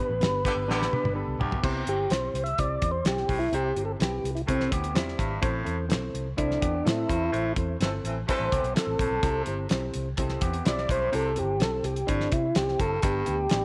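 A lightly overdriven tonewheel organ with key click and a slow rotary speaker carries the melody and solos from 1.6 seconds onward in this joyful, uptempo 1960s-style soul excerpt in C major at 126 BPM, backed by a cloth-damped, thuddy drum kit with a fat snare and dark cymbals, a round, foam-muted fingered bass, a reedy, slightly out-of-tune electric piano, a raspy baritone saxophone riff, a twangy guitar through a small old amp, and a distant, roomy horn section that punctuates the band accents near 0.4 and 7.8 seconds, all in light studio reverb.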